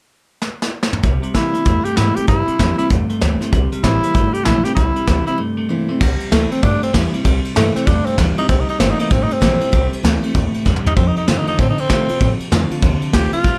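Rollicking and upbeat, this swung rockabilly excerpt at 193 BPM in C mixolydian opens with a fill on a soft, roomy brush drum kit before woody pizzicato upright bass, a twangy clean electric guitar riff and a bright picked steel-string acoustic guitar with finger squeak enter at 1.0 seconds, joined up front by a raspy, growling tenor saxophone melody from 1.3 seconds, with a break at 5.4 seconds and the harmony moving from C7 to F7 in a moderately reverberant studio room.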